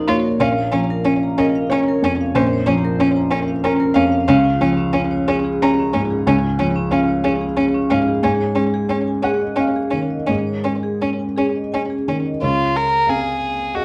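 In a rubato 3/4 at 91 BPM, this melancholic, fragile neoclassical piece for piano and strings, tuned to A4 = 437 Hz and cut from a longer work, sets a felt-muted upright piano, mellow and intimate with audible action noise, beneath a rich, floating sul tasto violin melody touched by slapback echo, while a bright, metallic vibraphone played with medium hard mallets and motor vibrato rings out arpeggios in the background until 12.4 s, as the harmony moves from Bbm through Db and Absus4 to Dbmaj7 in a dark, reverberant studio production.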